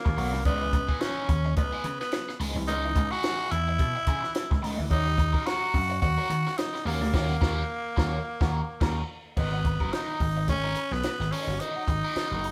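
Cool and hypnotic, this funk excerpt at 108 BPM in G# minor, with a lightly swung 16th feel, sets a raspy, growling tenor saxophone out front over a punchy vintage slap bass, a dark, scooped overdriven electric guitar colored by wah and phaser, and a dry compact cocktail drum kit with a high-tuned snare and dark cymbals, all played live in one room with moderate large-studio reverb, as the chords move from C#m9 to D#7#9, the band hits accents from 7.1 to 9.4 seconds, and a new section arrives on G#m9 at 9.4 seconds.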